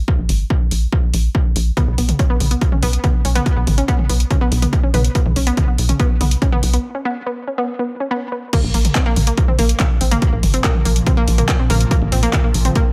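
A straight 4/4 pulse at 142 BPM drives this hypnotic peak-time techno in Bb minor, built on an up-front, layered electronic kick with tape-warm punch and a tight sawtooth sequencer bass that pumps against it, joined by an analog drum machine's hi-hats, handclaps, toms and crash. At 1.8 seconds a round, detuned analog pluck enters with chorus, tube saturation and digital delay, and after a break from 6.8 to 8.5 seconds the drop lands on a Bb5 chord. A tense, granular swarming drone enters in the background from 9.7 seconds, set in its own reverb within an otherwise dry, punchy mix that is cut from a longer piece.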